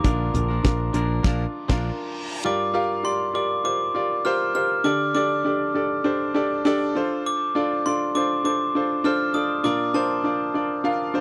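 Bell-like glockenspiel with a slapback echo carries the melody over a clear concert grand piano in this driving, earnest piano-driven pop excerpt in G minor at 100 BPM, where a damped 70s drum kit with a fat snare, a punchy picked electric bass and a twangy clean electric guitar riff play from the start and hit a band accent before dropping out at 1.9 s, and an electronic reverse cymbal leads into a piano-and-glockenspiel passage from 2.4 s, all in a dry, close 1970s-style studio sound.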